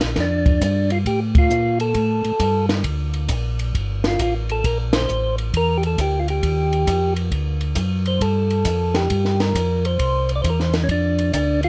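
Soul jazz organ trio music with a bluesy, soulful mood and a swinging 4/4 feel, taken as an excerpt from a longer piece. A mellow, round tonewheel organ carries the bass line low in its range through a slow rotary speaker, while a compact acoustic cocktail drum kit plays hi-hat, kick, ride cymbal and a high-tuned snare with a punchy kick and a smooth, rolled-off top. From 0.2 seconds a second tonewheel organ takes the melody, its clean, dark tone sharpened by third harmonic percussion and likewise turning through a slow rotary speaker. The band hits accents together at 1.3 and 4.9 seconds as the harmony moves through suspended, added-ninth and minor colours before settling toward a closing C to F. The sound is dry and intimate, with close, detailed microphones placing the organs and drums up front.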